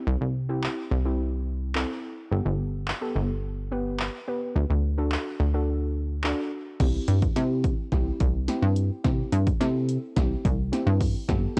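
A straight 4/4 groove at 107 BPM drives this euphoric, carefree dance-pop excerpt, where a soft, round, warbling pluck with chorus and cassette tape color opens at 0.0 s and is joined at 0.1 s by an up-front, funky sawtooth-and-square analog bass with transformer saturation and sidechain pumping. A punchy, tape-warm analog drum machine of kick, snare, handclaps, hi-hat and crash cymbal, with short room on snare, clap and hats, enters at 0.6 s as the chords move through C, Gadd9 and D, and from 6.8 s a drum fill builds up as the harmony returns to C, all in a digital ambience with a home-cassette sound.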